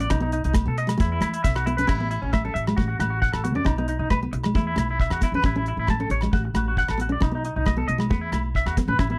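A bright, twangy clean electric guitar sits up front with picked arpeggios colored by tremolo and slapback echo, driving this joyful, danceable highlife guitar band excerpt in A major at 135 BPM in a straight 4/4. Beneath it, a full-bodied, fingerpicked nylon-string guitar supplies accompaniment while a woody pizzicato upright bass anchors chords moving through B7, E5, A and a rootless D/A, with the harmony settling into its second section at 1.9 seconds. A damped 70s drum kit with dark cymbals, a tight kick and rim clicks punches forward, and ringing agogo bells sit in the background, all captured in a dry, close 1970s-style studio sound.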